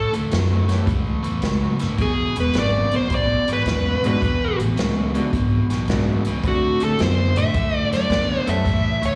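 Heard live through a club PA with light reverb and small-room ambience, this gritty, rollicking electric blues shuffle swings at 108 BPM in 4/4 over A7, E9 and D9, with a dark, overdriven lead guitar carrying the melody up front, a compressed, overdriven electric guitar picking the riff, a woody, growly pizzicato upright bass, an airy big-band drum kit with punchy kick, snare and hi-hat, and a brilliant upright piano with slapback echo entering at 0.7 seconds, in a fragment cut from a longer piece.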